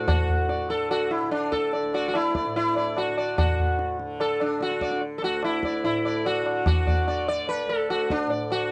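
Hindustani classical music in a meditative, serene mood, cut from a longer piece, with an up-front, plectrum-plucked sitar carrying the melody over its buzzing sympathetic strings, a bright tanpura drone shimmering softly beneath, and a high-tuned, close and dry tabla entering at 0.1 seconds, all heard in light reverb through the worn, warbling pitch drift of old cassette tape.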